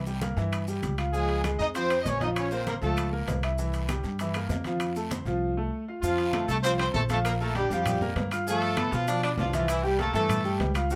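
A dark, woody upright bass, plucked with steel strings and sitting up front, opens this sunny, joyful salsa excerpt in F major at a brisk 197 BPM in straight 4/4. A bright, brilliant baby grand piano with long, open sustain fills out the accompaniment, joined by a percussion bed of thick-skinned, low-tuned congas and grainy, mellow maracas in the background, ringing metal-shell timbales, and very quiet touches of raspy guiro and vintage, band-limited claves. At 1.1 seconds a warm horn section carries the melody as a smooth-topped, pop-style ensemble with light vibrato, then falls away at 3.1 seconds before returning at 6.0 seconds for the restated passage. Colourful harmony drifts through chords such as Dbmaj9, Bbmadd9 and G9 before settling on C6. The small room lends the playing a moderate ambience.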